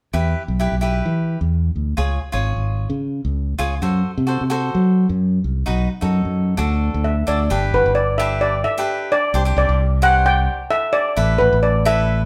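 Recorded as a band playing live in one room with moderate large-studio reverb, this tense, intense calypso excerpt moves at 130 BPM in 4/4 with a light sixteenth-note swing. A crisp, picked acoustic cavaquinho carries the accompaniment over an up-front, growly fingered electric bass with a bright, direct tone, the pair moving through Em, C#, F#dim, B and D before turning to G, Csus2 and Asus2. At 7.0 seconds a dark, shimmering lead steel pan enters, its smooth metallic voice struck with hard rubber sticks and placed up front in the mix.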